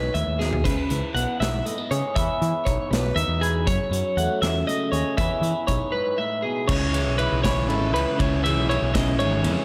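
A bright, clean twelve-string electric guitar sits up front with compressed, picked arpeggios shimmering through analog delay and slapback echo, in a playful, bright passage of math rock and midwest emo cut from a longer piece, moving in 6/8 at 80 BPM through chords such as Emaj7, C#m9 and F#m9. Beneath it, a slightly broken-up guitar through a small old amp adds phaser-tinged accompaniment, a growling, overdriven fingered bass anchors the low end, and a loose indie drum kit with a tight kick and pumping room sound opens with a fill at 0.4 seconds. At 6.7 seconds a crunchy, double-tracked overdriven guitar riff joins as the harmony shifts to C#m7, all set in a big arena sound with concert hall reverb.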